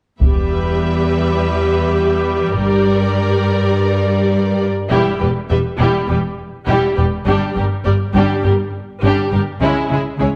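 Dark production on a scoring stage with moderate reverb frames this dramatic, heroic cinematic cue, cut from a longer epic orchestral film score in straight 4/4. The string sections enter together at 0.2 seconds, with solo taiko drums struck with heavy sticks, close and acoustic, sounding only until 1.4 seconds. Up front, the violas carry an intense bowed accompaniment with a smooth top, while the cellos hold a lush, even bass line with vibrato. Below them, the double basses add a warm, expressive foundation with a soft attack. The violins sit distant behind, playing a rich second line. From 4.9 seconds the music builds, passing through Em and G5 to end on C#m after an earlier turn from Em to Gm.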